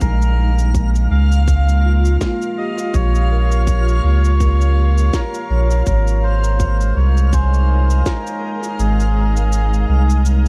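Dry and echo-heavy, this short cut from a longer ambient dub piece sits in a meditative, deep space at 82 BPM in 4/4, with a swung sixteenth-note feel in Bb minor, the harmony moving from Bbm7 to Ab at 5.9 seconds. A deep, round, soft sub bass sits up front and carries the most weight, while a tight electronic kick holds the pulse before dropping out at 8.8 seconds. Woody electronic snare and cabasa add quiet accents, trailed by small-room reverb and dub echo. A reedy, breathy melodica carries the melody with dub echo. Alongside it a metallic, ringing vibraphone plays arpeggios through tape echo, and a pure, organ-like pad holds sustained chords with ensemble chorus. Far in the background, a reversed, granular texture swells on a single high F5, adding a dreamy shimmer.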